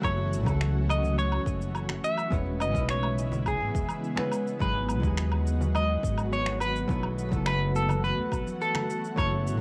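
This home cassette recording has a small room's short reverb, giving a smooth, warm sunset chillout groove in a straight four. Up front, a bright, clean semi-hollow electric guitar picks the melody, shimmering with harmonic tremolo and tape echo. A dark, compressed hollow-body jazz guitar accompanies it, roughened by vintage 12-bit sampler grit, while an ethereal, airy pad of detuned sawtooth and triangle tones holds slow-blooming chords through ensemble chorus and its own reverb. A woody, thumpy pizzicato upright bass sits prominently beneath, alongside a deep, overdriven electronic kick and a layered, overdriven mix of electronic woodblock, shaker and finger snaps, with very quiet, close, ringing congas played with soft hands joining at 0.2 s. The harmony moves from F#m7 through C#m7/E, G#m7 and B7sus4 before returning to F#m7 near the end of this 9.6-second section cut from a longer piece.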